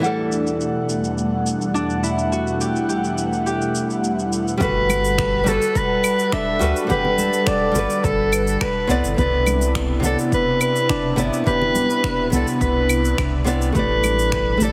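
This sunset chillout excerpt moves at 105 BPM in a straight 4/4, its mood warm and wistful as the chords drift from Em11 through Gmaj9 and Cmaj9 to a closing A7sus4. It opens with fingerpicked nylon-string guitar echoed by delay, an airy, breathy pad with chorus, phaser and a grainy 12-bit sampler grit, ringing concert harp arpeggios, and a low-passed bed of electronic shaker, claves and finger snaps, while a filter sweeps across both the pad and the harp. At 4.6 seconds a clear soprano saxophone takes the melody with light vibrato and a classical touch, sitting up front yet sounding distant and roomy through its delay. At the same moment a round, sine-like sub bass, a punchy layered electronic kick and bright, hard-handed congas tucked into the background fill out the groove. A lush hall reverb gives the mix depth, though the overall sound is heavily compressed, with a radio-like squeeze.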